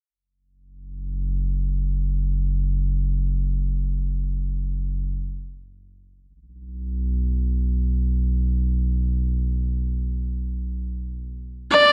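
A deep, rumbling drone opens this short ambient fragment at 0.9 s, moving through the low register between F#1 and B1 in free time, with tuning set to A4 = 439 Hz. Built from triangle and sawtooth tones with a slow attack, long sustain and long release, the dark, ominous bass sits up front, coloured by its own reverb and a phaser, and it gradually fades out across the piece. The mood is melancholic yet serene, held in a digital ambience. Only at 11.7 s does a clear electric violin appear, a single bowed and amplified player sounding a D5 with intense vibrato and a smooth top, placed up front above the drone. Everything stops at 11.9 s, as the recording is cut from a longer piece.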